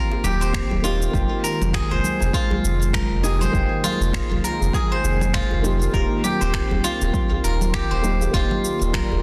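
A dense, heavily limited modern master with light reverb and a small room ambience frames this hypnotic, meditative stretch of organic downtempo, cut from a longer piece and moving at 100 BPM in 4/4 with a 58% swing on the sixteenths in F minor. Up front, a bright, silvery steel-string zither rings out fingerpicked arpeggios between F4 and C5, trailed by delay, while a soft, felt-muted upright piano sits in the background with dark, intimate accompaniment, its action noise audible beneath delay and sidechain pumping. A warbling, nostalgic pad of detuned sawtooth and triangle tones holds lo-fi sustained chords through chorus, phaser, built-in reverb and pumping, moving from Eb6 to Fm11 at 1.1 seconds and back to Eb6 at 5.9 seconds. A round, warm sine sub bass enters at 0.2 seconds, pumping on Eb1 and F1, and a deep, overdriven electronic kick joins at 0.5 seconds. Tape-tinged electronic congas, shaker and finger snaps, with soft clipping on the snare, mingle with a tight, cracking djembe that stays very quiet in the mix.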